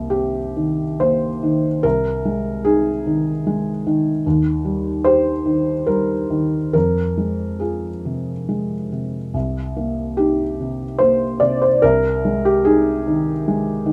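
A close, intimate sound with moderate studio reverb frames this reflective passage of neoclassical minimalist piano, taken from a longer piece. A solo felt-muted upright piano, dark and mellow with thick felt and placed up front, moves freely in 3/4 at around 66-76 BPM in C minor, spanning C2 to D5. Its chords drift from Cm7 through Ab/C, Eb and Fm before returning to Cm7 and Ab/C by 11.8 seconds.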